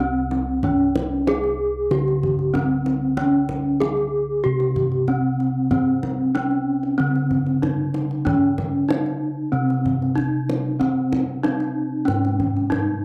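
Hypnotic and stately, this Javanese gamelan excerpt in C pelog moves at 94 BPM with a bronze metallophone carrying the melody in shimmering, paired-tuned ringing tones struck with a wooden mallet, round beating bossed gongs holding the bass up front, and a deep, distant kendang played with soft hands, all captured in a dry, close 1970s-style studio sound with light reverb.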